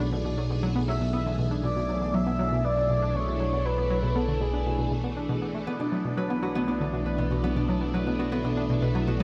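Ambient, sequencer-driven space music in B dorian at 119 BPM, expansive and cosmic, where a swirling, phased string machine fades in on sustained chords over a nasal, evolving analog drone and a round, detuned analog pluck riff, a breathy flute-like synth lead sings a melody from 0.9 to 4.9 seconds, and a ringing, fingerpicked concert harp takes up arpeggios at 5.7 seconds, all set in a dreamy, reverb-soaked mix with lossy compression artefacts in a short cut from a longer piece.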